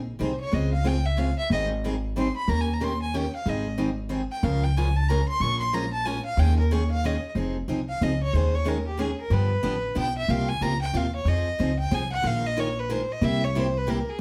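A swung eighth-note pulse in 3/4 drives this fiery acoustic string swing excerpt in the jazz manouche style, cut from a longer piece. An upright bass anchors the bottom with woody, thumpy gut-string pizzicato, while a bright picked steel-string acoustic guitar fills in the harmony. Over them a single bowed violin takes the solo throughout, its tone biting and earthy with light vibrato and a smooth top. The harmony moves through rich major sevenths and ninths before turning to the relative minor at 7.4 seconds, where suspended dominants pull the line toward a darker close on C7. All three players sit up front, yet a wet studio reverb places the listener further back in the room, lending the swinging trio a lively sense of space.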